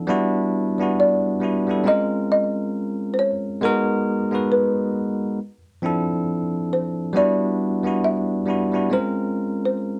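R&B at a slow 68 BPM with a lazy sixteenth-note swing, this late-night, introspective 10-second fragment is tuned slightly low at A4 = 435 Hz and drifts through a chain of minor ninth chords: Em9, Bbm9, G#m9 and Dm9. A soft-mallet folk marimba carries the melody with a woody, rustic, rounded tone, while a bell-like tine electric piano sits up front with bright, clean accompaniment. The sound is that of a dry, close 1970s-style studio with a touch of light reverb.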